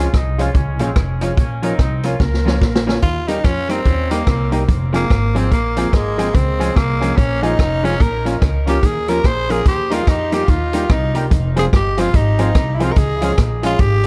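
Cheerful, bouncy ska excerpt at 145 BPM in Eb mixolydian, where a clear, punchy horn section states the melody before a drum fill hands over at 3.0 seconds to a raspy, growling tenor saxophone solo with tape echo, riding over pizzicato upright bass, a clean hollow-body jazz guitar and woody upright piano stabs both touched with tape echo, a very quiet dark semi-hollow guitar riff, and an up-front vintage drum kit with a punchy kick, all in a dark, dry production.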